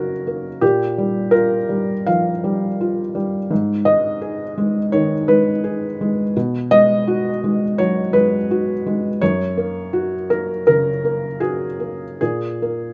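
A felt-muted upright piano plays alone and up front in this reflective, wistful neoclassical minimalist excerpt, its soft, mellow, intimate tone and short sustain moving in a rubato 4/4 through chords of F#, A#5, G#m and B6 under light reverb.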